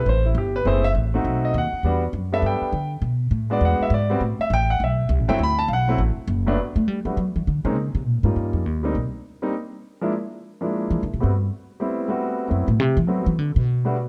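A concert grand piano and an upright bass open this swinging jazz fragment together, cut from a longer piece, with the piano taking the solo for the first 6.6 seconds. The piano sounds natural and up front, with a deep bass register, and its lines roam from low in the keyboard high into the treble. At 6.6 seconds the solo passes to the pizzicato upright bass, whose woody, thumpy steel-string tone sits just as close, while the piano keeps playing until 14.0 seconds. The harmony moves briskly through minor sevenths, a half-diminished chord, altered dominants and a sharp-eleven colour, with a brief chordless stretch in the bass solo. Swung eighths carry the groove, and a large studio reverb and a dark, warm production give the duo a roomy glow.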